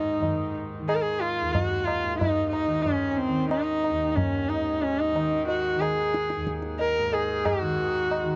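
A dry, close 1970s-style studio sound with light reverb frames this brief cut from a longer Hindustani performance of raga Bageshri in Eb at 91 BPM, longing and meditative in mood, where a bowed sarangi sits up front with a clear, focused tone, light vibrato, gliding portamento and sympathetic-string resonance touched by tape echo, over a buzzing, shimmering tanpura drone and high-tuned, ringing tabla that enters at 0.2 seconds.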